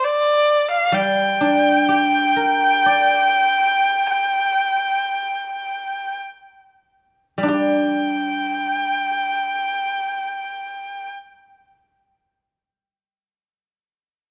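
A solo bowed erhu leads up front with a clear, nasal and earthy voice, light vibrato and sliding portamento, yet it sounds slightly distant as it carries the tender, wistful melody of this Chinese traditional chamber piece in G yu mode, rubato in 4/4 at roughly 45-66 BPM. A fingerpicked guzheng joins at 0.9 s with ringing, silvery accompaniment, also up front, while the tempo slows through the opening before a second passage begins at 7.5 s and the erhu falls silent at 11.1 s. Cut from a longer piece, the recording sits in moderate concert hall reverb and carries the worn, warbly pitch drift of old cassette tape.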